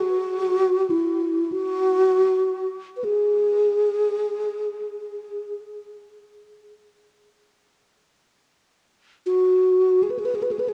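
A breathy bass flute opens the recording alone and carries this short piece of world meditation music from 0.0 to 10.7 seconds, drifting in free time with a haunting, spacious mood. Its mellow tone sits close-miked and up front, moving between E4 and B4 with vibrato, tongued notes and a slightly unsteady quality. The flute is coloured by cassette tape character and a tape echo that lengthens its phrases into the surrounding air. A wet small-room ambience frames the performance, giving it the intimate feel of a home recording on cassette. Tuned a touch above standard pitch, the passage is cut from a longer piece and feels like a brief, suspended moment of reflection.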